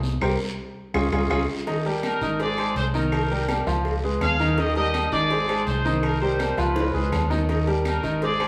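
A straight 4/4 salsa groove at 165 BPM in Eb major sets a joyful, danceable mood in this fragment of a longer piece. The up-front grand piano has a warm tone and leads the opening 1.7 seconds over a dark, amped hollow-body electric bass, while a drum fill and a band accent punctuate that first stretch. Behind them sit high-tuned, thin-skinned congas, a raspy guiro, woody claves, low-tuned cowbell and bongos, and ringing metal-shell timbales with agogo bells, with the cowbell, bongos and claves sounding distant. At 2.0 seconds a punchy trumpet section with vintage vibrato takes the tight, bright melody over a cycling Eb, Ab, Cm7, Db7 progression, and another drum fill arrives at 6.8 seconds. The band sounds as if it is playing live in one large studio room, wrapped in a generous, wet reverb.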